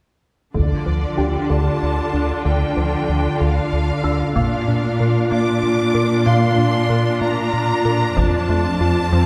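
A brooding, relentless hybrid orchestral and electronic film score in D minor, moving at a slow 63 BPM in 6/8 with a straight feel, cut from a longer piece. A lush violin section carries the focused, vibrato-rich melody high above, while a smooth, even viola section fills the middle. A distant cello section holds the bass line alongside a round, deep analog bass riff, and a taiko ensemble pounds with heavy sticks. Set back in the mix, a juicy, squelchy blip pluck with chorus spins bright arpeggios, and from 1.2 seconds a felt-muted upright piano adds a soft, intimate texture with audible action noise. The harmony moves from Dm to Bb and then to F at 8.2 seconds, all bathed in the reverb of a recital hall.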